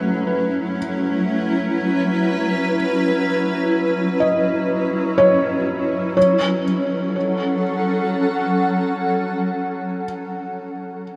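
A bright, blurred granular pad and a felt-muted upright piano begin together, the pad holding detuned, slow-blooming chords on F# minor with its own built-in reverb sitting up front, while the piano plays soft, intimate arpeggios through a delay with its key action audible. This free-time ambient excerpt in F# dorian feels spacious and reflective, bathed in a huge, wet reverb, and shifts into a new section at 6.2 seconds. The pad ends at 10.5 seconds, leaving the mellow piano to finish alone at 11.2 seconds.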